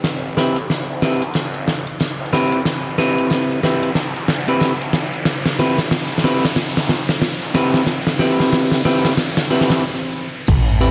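Swaggering and playful, this glitch hop passage, cut from a longer piece, rides a swung sixteenth-note feel across a build-up that sits on a single Am9 chord. A big, up-front arena drum kit drives it with crash cymbal, hi-hat, a fat snare and tambourine, rolling through an extended drum fill. From 0.4 seconds a clean, fingered semi-hollow electric guitar plays up-front stabs, pumped by sidechain and softened through a low-pass filter and digital delay. Beneath them sits a swirling, detuned sawtooth bass, thick and saturated with phaser and overdrive, while an electronic riser climbs alongside in the background. Everything halts at 9.8 seconds, and at 10.5 seconds a punchy, overdriven electronic kick lands with a sub drop for the closing impact, all bathed in a lush hall reverb.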